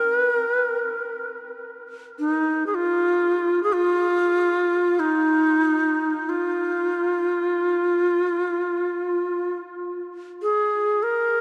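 A reedy, airy Native American-style wooden flute plays alone and up front for the full 11.4 seconds, its bright, lifted highs carrying vibrato and tongued notes that move between Eb4 and Bb4 in F minor pentatonic, tuned to A4 = 442 Hz. This meditative world piece drifts in free time, with a haunting, spacious mood. A huge, wet ambient reverb with a 6.5-second tail and a dark production frame the line, in an excerpt cut from a longer work.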